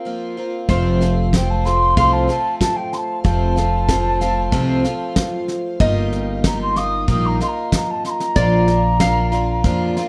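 Pastoral and hopeful, this folk excerpt moves at 94 BPM in a straight 4/4, centred on F mixolydian and cut from a longer piece. A picked twelve-string acoustic guitar opens alone, its shimmering, octave-doubled parlour tone sitting up front with audible finger squeak over a Bbsus2 before the band arrives on F at 0.7 seconds. There an upright bass, woody and pizzicato, joins a soft brush drum kit with a fat snare and tight kick, while a lap resonator guitar adds a nasal, metallic slide line played with fingerpicks above. A mellow wooden flute takes the melody from 1.3 seconds, airy and distant with gentle vibrato and a plate reverb giving it space. The harmony shifts to Ebadd9/G and then Bb near the close, all set in a moderate studio room.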